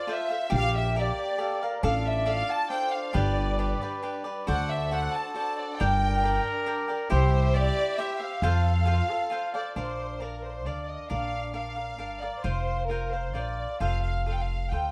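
A lush, bowed violin section carries the melody up front with smooth vibrato in this festive, romantic mariachi excerpt in 3/4 at 136 BPM. It is set over a woody, thumpy pizzicato upright bass, crisp picked cavaquinho accompaniment and a very quiet second violin section holding sustained chords. A dark, punchy trumpet plays a distant second line with tape echo until 9.5 s, and the music moves from F major to Bb major at 9.8 s.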